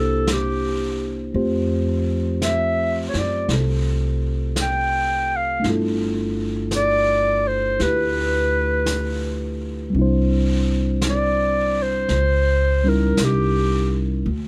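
Tender and intimate, this short jazz ballad moves at a slow 56 BPM in 4/4 with a gentle swing on the eighth notes, centered in C major. A breathy clarinet carries the melody up front, its whispered tone shaded by light vibrato, soft attacks and scooped notes that give it a vintage, close-up character. Beneath it, a mellow tine electric piano supplies clean, direct accompaniment, while a woody pizzicato upright bass sits forward in the mix. A brushed drum kit enters at 0.3 seconds, distant and roomy with a rolled-off top, its brushed snare and hi-hat kept well in the background. The harmony drifts from C7 through Fadd9 and G13 to Cadd9 before a C#dim7 at 12.1 seconds, and the dry, close sound keeps the playing feeling personal as this fragment of a longer piece closes at 14.5 seconds.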